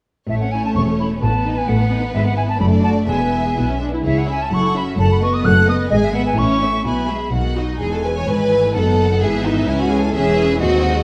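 At 0.3 s the full string body and a pure-toned silver flute begin together in this spirited, cheerful fragment of a quick classical-period orchestral movement in 2/4, moving with an elastic rubato. A distant, expressive violin section carries the melody while a second violin line and the flute's warm vibrato high above share the counter-line, violas supply a focused accompaniment, and rich, bowed cellos and double basses anchor the bass. The flute drops out at 7.3 s, just before a new section opens at 7.8 s, and the lush, vibrato-laden strings continue into a recital-hall reverb.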